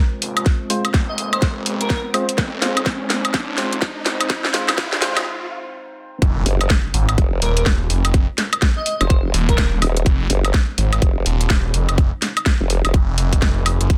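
A dense, heavily limited mix with light reverb carries this swaggering, bouncy bass house excerpt at 125 BPM in F minor, swung on the 16ths, where a tight electronic kick and a garage kit of cracking snare, warm hats and woodblock sit up front over a swirling, thick phased detuned saw bass and a deep, moody analog pad in the background. Through the build-up, a hollow, percussive organ stab and a faint riser sound under filter sweeps and a drum fill, with brief airy, dreamy lead phrases appearing at 1.1 seconds, before a short break gives way to the drop at 6.2 seconds. There an impact lands, and soon after a formant-sweep wobble bass, chorused and overdriven, pumps against the kick.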